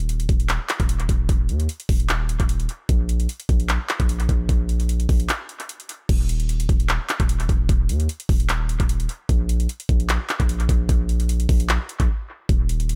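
Trap-flavored hip hop at 150 BPM in 4/4 with a half-time feel, this short excerpt carries a menacing, eerie mood. A long, sustained 808-style bass sits up front, its deep, mellow sine tone striking with a fast attack before decaying. The electronic trap kit shares the foreground with a knocking kick, metallic hi-hats, handclaps and crash cymbal, all treated with analog delay. Both parts play from 0.0 to 13.0 seconds, with the music shifting into a new section at 6.1 seconds and breaking briefly at 5.3 and 12.1 seconds. Digital ambience and an echo-heavy mix surround the piece.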